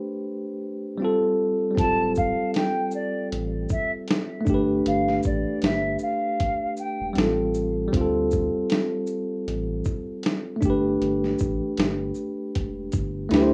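A swung 4/4 groove at 78 BPM, with 16th notes pushed to 59% swing, carries this reflective, melancholic lo-fi hip hop piece, cut from a longer work and tuned to A4 = 439 Hz. A bell-like tine electric piano opens alone on Gadd9, its clean, bright tone passed through built-in speakers, cassette tape and a low-pass filter, and it holds the accompaniment up front throughout. At 1.8 seconds the sampler-style drum kit arrives with a thumpy kick, a medium-tuned snare, hi-hat and shaker, compressed and muffled as if re-recorded in a small room. A soft dub sub bass enters at the same moment, its round, deep triangle and square tones sustained beneath the harmony. A mellow silver concert flute carries the melody from 1.8 to 7.1 seconds, its pure, hollow metal voice shaded by vibrato and a low-pass filter, sounding distant yet still up front. The chords drift through Dm7, G9, Fadd9/A and G69, and light reverb and studio ambience lend the whole track the feel of a rough home demo.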